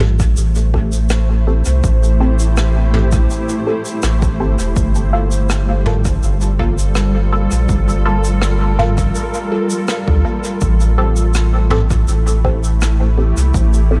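A hazy, deep ambient dub groove at 82 BPM opens with a cloudy, granular pad holding sustained chords, a nasal, filtered chord stab with phaser, chorus and dub echo, a round sub bass up front, and a vintage brush kit of rim clicks, shaker and toms with a rolled-off top and its own dub echo. An overdriven, punchy electronic kick joins at 0.2 seconds, sitting in the background beneath the harmony as it moves from Am7 to Gm9 and back to Am7. Light reverb and small-room ambience frame this fragment of a longer piece.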